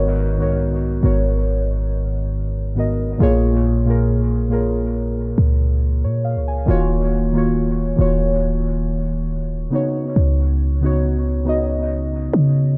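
A dry, echo-heavy mix frames this short contemporary R&B excerpt, with a longing, late-night mood and a gentle sixteenth-note swing. Muted, felt-like synth keys sit up front, dark and intimate, coloured by chorus, phaser and dub echo as they carry the chords from G#m11 through A#m7 and D#m9 to C#9sus4. Beneath them, a deep, boomy 808-style bass with a mellow sine tone plays throughout the full 12.8 seconds.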